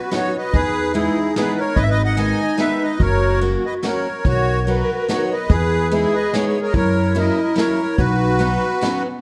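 A lilting, swung 3/4 at 145 BPM with gentle rubato carries this nostalgic, whirling musette waltz fragment in B major, where a reedy, sweet accordion with light tremolo tuning sings the melody close and up front, a mellow clarinet adds a jazz-style second line with vibrato and subtone, a picked steel-string acoustic guitar accompanies with audible finger squeak, a woody pizzicato upright bass enters at 0.5 s, and a vintage brush kit with a dark, rolled-off top and punchy kick keeps time, all set in a moderate recital hall reverb.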